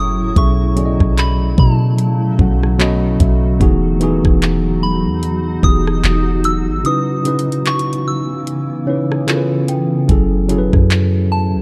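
Contemporary R&B at 74 BPM with a swung 16th feel, sensual and late-night, where a worn, slightly out-of-tune tine electric piano sits up front and adds a fill at 2.4 seconds, a round 808-style bass and an electronic drum kit with knocking kick, metallic hats, handclaps and rim clicks hold down the low end, a cloudy granular pad with sidechain pumping drifts beneath, a pure FM synth bell carries the high melody through chorus, phaser and delay, and a delicate celesta glints in the background at 0.0 and again at 8.9 seconds during a break, over chords moving from B13sus4 through Emaj9 to F#m9 in a dark, warm production.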